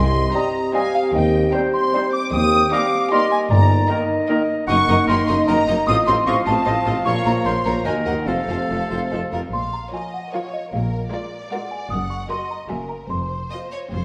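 Moving in a brisk, straight 3/4 at 151 BPM, this cinematic film cue is playful and whimsical with a sneaky, mischievous streak, settling into Bb minor from 4.7 s. The melody is carried by a lush, expressive symphonic violin section joined by a delicate, bell-like celesta sitting sweetly in the background. Around them, a mellow, hollow concert flute, a warm clarinet, a clear oboe and a focused chamber violin section spin second lines, while a mellow bassoon and a smooth chamber viola section fill in accompaniment and a dark, roomy French horn section holds sustained chords. The low end rests on an even double bass section, a cello section and a soft-attacked tuba. The winds, horns and tuba drop out around 9.3 s, leaving strings and celesta to close the fragment over chords moving toward a suspended ending, all bathed in a wet scoring stage reverb.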